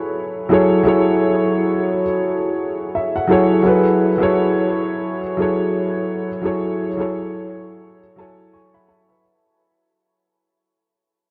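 Reflective and hazy, this hip hop excerpt moves at 86 BPM in 4/4 with a 16th-note swing, resting on an F#m11 chord in F# minor. A dark, woody upright piano plays alone and up front, its action noise audible and its long sustain filtered through a low-pass filter and tape echo, with fills at 2.6 and 7.8 seconds. A huge ambient reverb soaks the dreamy mix, and the piece fades out from 3.6 seconds to its close at 9.2 seconds.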